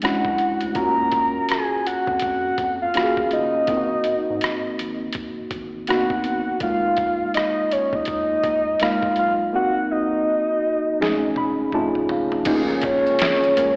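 Heard like a live gig through a venue PA, with recital-hall reverb and an AM-radio tint, this sultry, soulful neo-soul R&B excerpt at 82 BPM in 4/4 with a swung 16th feel sets a full-bodied, octave-layered synth lead with chorus, phaser and slapback echo over a worn, slightly out-of-tune tine electric piano, a deep, round analog bass and a gritty, pitched-down boom bap drum kit, moving from Bb7#9b13 to F7alt, where piano and drums both fill from 11.0 s; very quiet, distant maracas and finger snaps slip in at 12.4 s, and a brief closing passage from 12.5 s adds a slightly broken-up guitar through a small old amp and a smooth tonewheel organ with fast rotary speaker.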